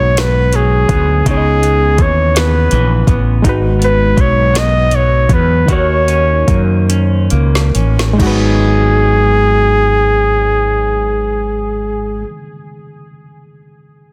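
Up front, a warm, close-miked flugelhorn carries the melody with vibrato, its line touched by tape echo across this slow, late-night R&B excerpt in G# minor, moving in a straight 6/8 at 44-55 BPM counted in dotted quarters. Beneath it, a round, dark fretless electric bass sits just as close, while an electric guitar at the edge of break-up plays a twangy, fingered second line. A reed electric piano, worn and slightly out of tune, accompanies in the background through its built-in speakers and is the last part heard, sounding until 14.1 s. The produced drum kit, with a soft kick, woody snare and metallic hats re-recorded in a small room, enters at 0.2 s, plays a fill as the tempo slows, and stops at 8.4 s. The harmony moves through G#m7, C#m9 and D#m7 before returning to G#m7 as a second section begins at 8.2 s, and the whole has a yearning mood in a dense, heavily limited modern master with little reverb.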